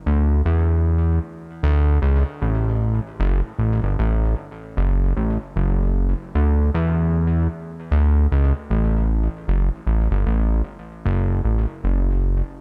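Warm and uplifting, this short reggae excerpt in 4/4 with a swung sixteenth-note feel features a fat analog bass playing alone from 0.1 to 12.4 seconds, its thick, detuned sawtooth tone with a filter sweep, fast attack and sustained notes sitting up front in a dry mix and trailed by tape echo.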